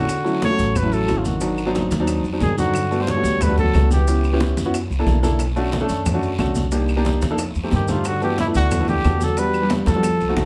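A brisk, straight 4/4 groove at 181 BPM drives this lively, sunny Afro-Cuban jazz passage in D major, where a natural, up-front baby grand piano and a woody pizzicato upright bass play throughout; a mellow trumpet with plate reverb, light vibrato and scooped notes carries the melody over a dark, breathy trombone second line with slapback echo until 4.4 seconds and again from 7.7 seconds; bright congas, round, very quiet bongos, claves, raspy guiro and grainy maracas fill out the percussion before a drum fill arrives at 9.7 seconds, the whole band heard from further back in a wet studio room.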